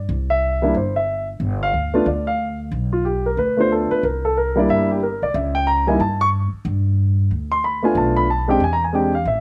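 A swinging 4/4 at 184 BPM, with the eighth notes swung at 62%, drives this brief, relaxed and sophisticated jazz piano trio excerpt in G mixolydian. An upright bass opens at 0.0 seconds, plucked pizzicato on steel strings with a woody, growly tone that sits up front in the range from G1 to G2. The grand piano joins at 0.3 seconds and carries the melody from G3 up to C#6, its dark, mellow voice placed close and touched with a slapback echo. The harmony moves from C through a rootless G9, C9 and C#dim7 back to G, then turns on Bm7b5 and E7alt near the end. The sound is dry and open-air, with little reverb and an intimate, unadorned presence, and the passage breaks off at 9.4 seconds as part of a longer piece.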